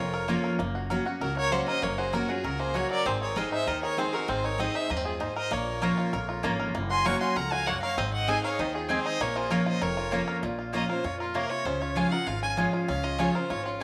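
Haunting yet driving, this bluegrass excerpt in Bb minor moves at a brisk 195 BPM in a straight 4/4, cut from a longer piece. Two clear, bowed fiddles carry the tune: the lead sits up front with a smooth, even tone and light vibrato, while a more focused second line runs beneath it until 10.4 seconds, when the lead fiddle takes a solo over a shift toward Db. A mellow, twangy banjo played with fingerpicks adds a percussive melodic thread, and an up-front, bright, full-bodied dreadnought guitar supplies the picked accompaniment. Underneath, a pizzicato upright bass with gut strings gives a thumpy, dark, woody foundation, and a very quiet, double-strung mandolin adds picked stabs, briefly at the start and then steadily from 5.8 seconds. The chords cycle through Bbm, Gb and Ab, and a moderate echo-chamber reverb with studio ambience lends the ensemble a spacious, lingering glow.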